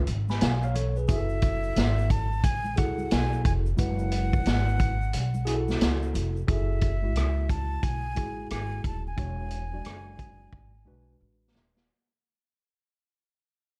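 Smoky and cool, this jazz-hop excerpt in F# minor swings at 89 BPM as a breathy, straight-toned concert flute floats over a worn, slightly out-of-tune tine electric piano with light overdrive and plate reverb, a woody pizzicato upright bass, a punchy vintage drum kit with 12-bit sampler grit, and very quiet, soft-handed shaker and congas that drop out at 6.5 seconds, after the kick has gone silent from 5.1 seconds, as the track fades under a closing drum fill at 10.5 seconds and a dark production dusted with vinyl crackle.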